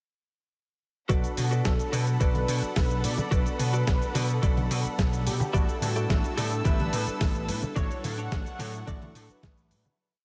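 The recording sits in light reverb and digital ambience, with drums that sound gritty, tape-warm and re-recorded in a large room. It is a groovy, sensual nu-disco piece in 4/4 with a straight feel, starting directly in a drop at 1.1 seconds and fading out from 7.0 seconds. An up-front, thumpy electronic kick drum holds a four-on-the-floor pulse. A dusty soul sampler-style kit adds a medium-tuned snare on the disco backbeat along with shaker and closed and open hi-hats, while soft-handed cabasa and congas sit close and dry in the background. A punchy, amped vintage slap bass jumps octaves beneath a clean, bright direct-recorded electric guitar playing a funk chord rhythm in close voicing. Round, dark mellow synth brass with chorus, phaser and tape echo throws syncopated rootless chord stabs, a biting symphonic string section holds a pumping sustained pad with light vibrato, and a thick, bold unison lead with vibrato and tape echo sings hook phrases over chords moving from Bm7 to A7sus4 to Dmaj7/A.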